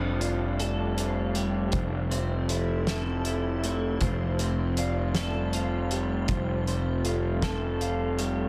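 A bright, twangy twelve-string electric guitar picks arpeggios through ensemble chorus and analog delay alongside a ringing vibraphone in the background and an up-front fuzz bass holding F1, as a loose indie drum kit with a fat snare and punchy kick and an icy, crystalline glass pad of sustained chords fill out this cinematic, hopeful post-rock excerpt in 6/8 at 53 BPM in F major, moving from Gsus2/F to Am/F to Fadd9 under light studio reverb.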